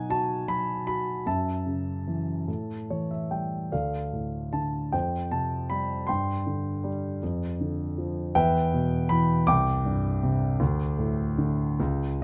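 A dark, mellow grand piano plays alone in this reflective, melancholic classical fragment, its intimate, up-front sound carrying audible action noise under light reverb as a 6/8 rubato line moves from an opening passage into a second section at 3.7 s, with brief fills at 2.5 s and 11.8 s.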